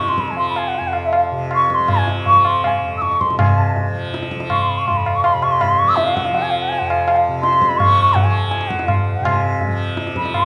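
Solemn and meditative, this Hindustani classical excerpt in raga todi at 162 BPM features a mellow, pure bamboo bansuri with vibrato carrying the melody between E5 and E6 over a bright, buzzing tanpura drone and a high-tuned, ringing tabla with a vintage, band-limited tone, all set in a wet scoring-stage reverb as the tempo speeds up.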